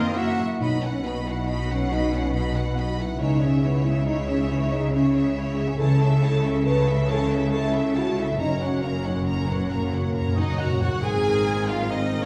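Opening at once with nearly the full orchestra, this adventurous, heroic cinematic cue in 3/4 sets a lush, distant studio violin section on the melody over a focused symphonic violin line and portamento-tinged violas, with mellow French horns and dark trombones holding sustained chords, a very quiet, ringing concert harp playing arpeggios, and smooth cellos and expressive double basses underneath. Brief touches of airy flutes, a clear oboe, a smooth-topped clarinet and warm trumpet stabs come and go, close, dry timpani add a fill from 8.4 s before a new section arrives at 11.0 s, and the orchestra sits in a reverberant recital hall.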